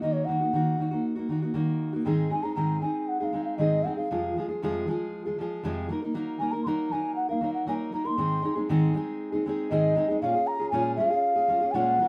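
A mellow, airy bansuri carries an easy-going, heartfelt pop melody from the very start at 118 BPM, its straight, tongued tone rolled off in the highs, over an up-front, dark, full-bodied jumbo acoustic guitar fingerpicking chords that begin on Ebm and arrive at Bbm7 by 10.2 seconds, the pair sitting in light reverb through this 12-second excerpt of a longer piece.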